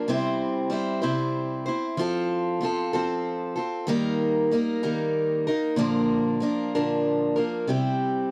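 A dry, close recording in a 1970s studio style puts a lone picked steel-string acoustic guitar up front, its fresh strings and parlour-sized body giving a jangly ring with a warm core. This brief rock passage in 6/8, cut from a longer piece, moves through C, F, Eb and Bb before settling back on C at 7.7 seconds, the guitar spanning a range from Bb2 to C5.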